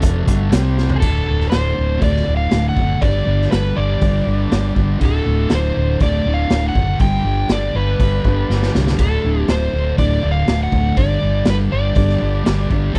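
Dry and raunchy, this gritty cut of blues rock and southern rock has a thick, double-tracked fuzz guitar riff up front over a dark, round, foam-muted fingered bass and a saturated garage drum kit with a pumping small-room sound, dark cymbals and a punchy kick, the kit filling at 0.8 s and 8.5 seconds, while an overdriven slide guitar with slapback echo takes the melody from 1.0 s and a full tonewheel organ with key click and percussion holds sustained chords in the background.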